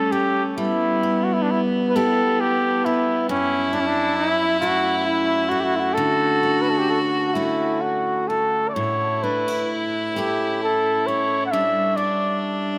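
A mellow trumpet carries a longing, mournful Celtic slow air from the opening moment, sung in a classical style with light vibrato, while a single bowed fiddle, rich, smooth and even with its own light vibrato, traces a lower second line, and a bright picked steel-string acoustic guitar adds accompaniment with audible finger squeaks. The 6/8 pulse moves in free rubato with uneven beats, drifting through suspended and seventh chords under the trumpet's up-front solo. A wet cathedral reverb with a long 5.5-second decay surrounds the trio, and the trumpet falls away at 12.4 seconds just before this fragment of a longer piece cuts off.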